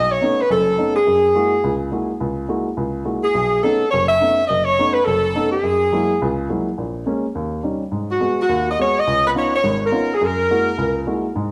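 Jazz at a brisk 210 BPM in 4/4, this short excerpt from a longer piece swings its eighth notes and carries a brassy, swinging mood in F# mixolydian, tuned a touch low to A4 = 436 Hz. A tight saxophone section carries the melody between F#4 and E5, sitting up front with a close-miked, warm presence in an idiomatic jazz style until 11.1 s. Beneath it, a baby grand piano plays accompaniment from deep F#1 up to F#4, also placed forward in the mix but a step below the horns, and rings on to 11.5 s. The harmony leans on rich dominant colours, moving between B9 and F#9 before a turnaround through A#m7, D#7, G#m7 and C#9 lands back on F#9. Close, detailed microphones and a moderate scoring-stage reverb give the ensemble a polished, roomy finish.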